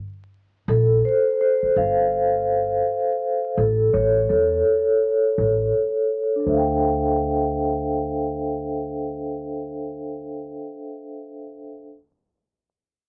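A swung 4/4 groove at 83 BPM drives this hazy, melancholic lo-fi hip hop excerpt in D minor, where a mellow, ringing vibraphone played with soft mallets and medium motor vibrato sits close and up front under cassette tape coloring and a low-pass filter, while a woody, dark pizzicato upright bass enters with it at 0.7 s and drops out at 10.6 s, as a filter sweep runs through the opening 6.5 s, the harmony moves from a chordless start to A5 and then Dm11, and the whole mix is framed by light reverb, vinyl crackle and the muffled tone of a home cassette recording.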